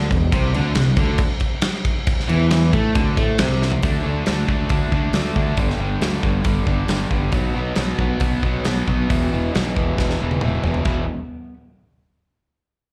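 A bright, overdriven semi-hollow guitar opens this aggressive, heavy hard rock excerpt in E minor at 136 BPM, its double-tracked riff ringing with a slapback echo. Alongside it, a round, fuzz-driven fingered electric bass sits low and punchy, while a big, acoustic rock kit of kick, snare, hi-hat, toms and crash cymbal hits up front with a medium-tuned snare and a big room sound. The chords move from C69 through D5, G5, B5 and E5, with a drum fill at 3.6 seconds pushing into the next passage and a longer fill from 10.0 seconds closing it out. The sound is that of a live club gig heard through the venue's PA, with light, roomy reverb around the band. The bass stops at 11.1 seconds, leaving the guitar ringing until 11.5 seconds as the fragment cuts off.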